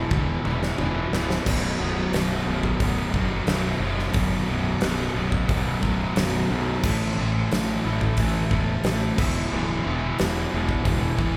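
An overdriven electric guitar and a fuzz-laden fingered bass strike up together at the start of this hard rock excerpt, and a huge arena drum kit enters almost at once with a fill that runs until 1.5 seconds. The mood is anthemic and swaggering, moving at 89 BPM in a straight 4/4, tuned slightly below standard pitch at A4 = 439 Hz. The dark, picked guitar riff is double-tracked and sits up front, driving power chords from E5 to B5, then A5 at 6.8 seconds before returning to E5. Underneath, the bass growls low and punchy, its direct-and-amped tone pushed into fuzz and overdrive. The drums bring a fat snare, punchy kick, bright cymbals, hi-hat and toms, with the kit's pumping room sound placed forward in the mix. A moderate large-studio reverb gives the feel of a band playing live together in one large studio room.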